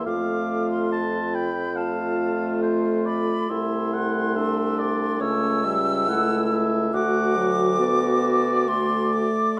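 A wind quintet opens together from the first moment, playing a serene, slow romantic classical movement at 70 BPM in 4/4 with a rubato feel, tuned to A4 = 442 Hz. The hollow concert flute carries the melody high above an oboe second line, sounding airy and close with vibrato and a crisp attack, while the oboe sits distant and roomy, its vibrato lending it a warm glow. Beneath them, a clear clarinet with a smooth top stays in the background as accompaniment alongside a French horn with light vibrato, and a mellow, soft-attacked bassoon anchors the bass from afar. The harmony moves from F to Am/C at 3.5 seconds, then through A7/C# to D at 6.9 seconds. A recital hall reverb gives the ensemble a wet, resonant space, and this short extract from a longer piece ends at 9.6 seconds.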